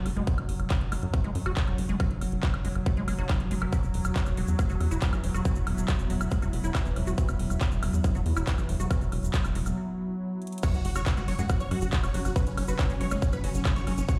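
The recording has a digital ambience, as if played on a big sound system in a bare room and washed in large studio reverb. This psychedelic trance excerpt feels alien from the start: a swarming, warbling drone holds sustained chords, while a granular cloud pad drifts in the background with a blurred, mellow texture as the ambient opening fades in, both pumping under sidechain. Up front, a punchy electronic kick and a tight, dark sequencer bass with a filter pluck drive the straight 4/4 pulse. They are joined by a big-room dance kit of handclaps, crash cymbal, woodblock and metallic hats, while a squelchy, resonant acid bass riff with chorus, delay and sidechain pumping sits further back. A grainy egg shaker enters quietly at 3.7 seconds. After a short break and a drum fill, the drop lands at 10.6 seconds, where a huge, detuned supersaw melody with phaser, vibrato, delay and sidechain pumping joins the mix above a very quiet sub drop.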